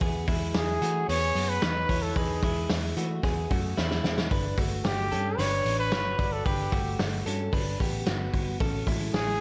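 A breathy, whispered trumpet carries the melody from 0.6 s over a bright, breezy jangly indie pop groove at 112 BPM in E major, with twangy clean electric guitar arpeggios touched by slapback echo, a dark, foam-muted picked bass, and a gritty, punchy loose drum kit that drops a fill at 3.8 s, all moving through Emaj7, Gmaj7 and Amaj7 in a lush hall that lends a big arena sound to this cut from a longer piece.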